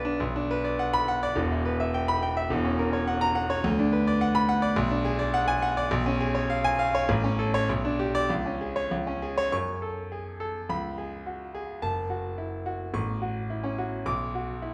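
Set in the wet reverb of a recital hall, this passionate, agitated fragment of a classical virtuoso piano study has a solo concert grand, clear, smooth and vintage with a deep bass and short sustain, sitting up front at 105 BPM in a rubato 2/4, starting in B minor, shifting toward F# minor at 4.8 seconds, and returning to a B minor chord just before its cut at 14.7 seconds.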